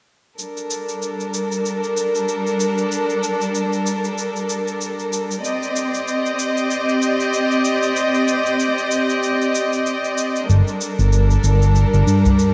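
A warm chamber string section opens at 0.4 seconds, holding sustained bowed chords close and up front with light vibrato, a soft attack and a sul tasto tone, bathed in shimmer reverb. Beneath it a cabasa with an electronic, produced character keeps a low-level pulse in a small room ambience. This is a hypnotic piece of organic downtempo at 95 BPM in G minor, with a 16th-note swing, and the harmony moves from Gm to Cm and back to Gm. At 10.5 seconds a smooth synth bass arrives, a nasal, mellow blend of sawtooth, square and triangle waves with a fast attack, vibrato and tube saturation, sitting prominently in the mix. A deep, close udu sounds a single brief acoustic accent near 12.3 seconds. The whole is cut from a longer piece and drenched in a lush hall reverb within a bright 1980s-style digital production.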